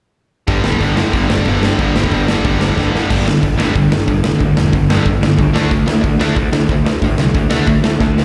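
A growling, fuzz-drenched electric bass sits up front in this energetic, upbeat punk rock cut from a longer piece, its picked, overdriven tone both direct and amped. Beside it, a bright, overdriven electric guitar drives a riff up front, while a second, distorted guitar also plays a riff further back in the mix. A big, acoustic rock kit, with a punchy kick, a medium-tuned snare, hi-hat and gleaming crashes, pushes a straight 4/4 beat, and all four parts play together from start to finish. The harmony moves from G5 to D5 at 5.6 seconds, after a drum fill carries the music into a second section at 3.1 seconds, and another fill lands at 8.0 seconds. The sound has the feel of a live gig heard through the venue's PA, with small-room ambience and a recital-hall reverb around the band.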